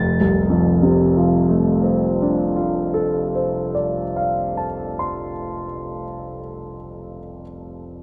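A moderate concert hall reverb, with a decay of about 1.9 seconds, surrounds a polished grand piano that sits up front and present in the sound. This short excerpt of impressionist classical solo piano moves at a slow 40 BPM in 4/4, with a free, rubato feel that gives it a hazy, serene mood. The piano plays alone from 0.0 to 8.0 seconds, ranging from F1 up to A6, and its long sustain lets each sonority ring into the hall. The music is in F major, opening on an F6 chord, and the first section closes at 5.9 seconds. The instrument is tuned slightly below modern concert pitch, at A4 = 436 Hz.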